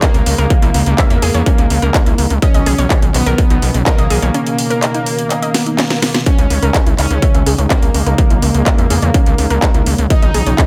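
A straight 4/4 pulse at 125 BPM drives this hypnotic, dramatic melodic techno in C# dorian, built on a distorted, up-front electronic kick and a techno kit of cracking snare, handclaps and metallic hats alongside a gritty, saturated sawtooth synth bass with sidechain pumping, while a bold, nasal analog synth brass carries the melody with chorus, vibrato, digital delay and pumping over a full-bodied sweeping resonant pad, warbling lo-fi pluck arpeggios with chorus, delay and pumping, and a very quiet evolving analog drone on C#3, the harmony moving between C#m and Badd9 in a dry mix, with a break from 4.3 to 6.3 seconds capped by a drum fill starting at 5.5 seconds.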